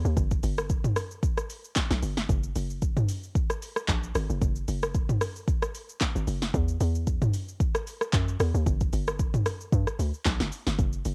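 A relaxed 4/4 groove at 113 BPM swings its sixteenths gently, giving this soulful amapiano clip from a longer piece an easy, rolling sway. A hollow log drum bass opens the clip and runs the whole 11.1 seconds, moving between F#1 and G2 with a bouncy, percussive FM tone, fast attack and mellow decay, touched by a noise layer. A deep house drum kit enters at 0.1 seconds, layering a deep kick, a punchy snare, handclaps, hi-hat, rim clicks, shaker and toms into a produced, electronic pattern. Both parts sit up front in a dry mix with little reverb, captured as a home recording on cassette. The tuning rests slightly low, at A4 = 438 Hz.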